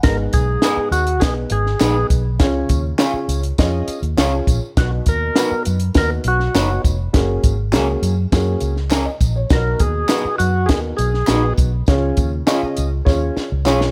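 Warm and uplifting, this short cut from an uptempo 1960s-style soul tune moves at 101 BPM in a straight 4/4, with a percussive tonewheel organ up front carrying the melody through a slow rotary speaker, its key click audible, until it drops out at 11.5 s. A dark, woody upright piano with audible action noise and a slightly detuned character fills in the accompaniment, while a round, foam-muted fingered electric bass and a compact cocktail kit with a high-tuned snare and punchy kick drive the groove, joined from 0.6 s by twangy, slightly broken-up guitar stabs with subtle chorus. Maracas and group handclaps sit in the background, the dry sound keeps everything close, and a drum fill closes the passage at 13.1 s over chords moving from G#m through C#, B and F#add9.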